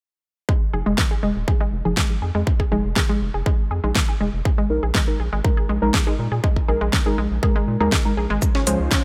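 A hopeful, expansive progressive house passage, cut from a longer piece, opens at 0.5 s with a lush, detuned unison pluck playing filter-swept arpeggios, pumping with delay over a punchy electronic kick; mellow, chorused chord stabs under their own filter sweep, a round, dark analog bass and a pop kit with a fat snare and metallic hats soon join, before a gritty shaker and snare slip in at 8.4 s and a smooth, warbling vintage pad surfaces in the background at 8.6 s.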